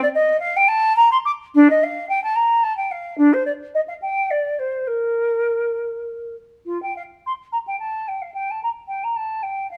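In a flexible, rubato 3/4 that drifts between 95 and 113 BPM, this brief cut from a longer baroque-style classical fantasia unfolds in Bb major with a serene, dance-like grace. A solo silver concert flute carries the whole passage, ranging from D4 to D6 with a mellow, hollow, pure tone, vibrato and a crisp attack. Light reverb surrounds the flute, and its opening phrase returns at 6.7 seconds before the recording ends at 9.8 seconds.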